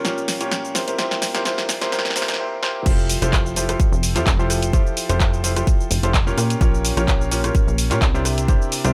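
Set in a light digital ambience with a high-pass sheen, this joyful, euphoric piano house excerpt in F major runs at 128 BPM with a gentle 16th-note swing, opening on a brilliant, up-front grand piano riff that pumps against the sidechain and trails digital delay over Bbm6 and C7 chords. A punchy house kit of bright hats, snare, claps, rim clicks, shaker and crash plays a drum fill through the build-up before a short break at 2.4 seconds. At 2.9 seconds the drop lands on Fmaj9 as a layered electronic kick and a plucky, funky analog bass with fast-attack, decaying wave-folded tones join the piano and drums, cycling back to Bbm6 and C9.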